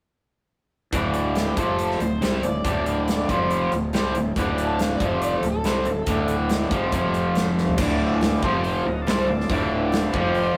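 A raw garage guitar riff opens this heavy, brooding blues rock and southern rock excerpt, double-tracked and up front with a brilliant, overdriven bite. It is joined at once by a fuzzy, growly fingered electric bass and a big acoustic rock drum kit with punchy kick, medium-tuned snare, hi-hat, toms and crash cymbal. The straight 4/4 groove moves between D5 and F5 power chords and D minor. A slide guitar carries the melody in a higher register from 1.4 s, sitting lower in the mix than the riff. After a drum fill at 7.6 s, a thick tonewheel organ enters in the background with gritty sustained chords, turned by a slow rotary speaker. The band sits in a moderate stone room reverb, with a rough rehearsal-room feel and warm saturation.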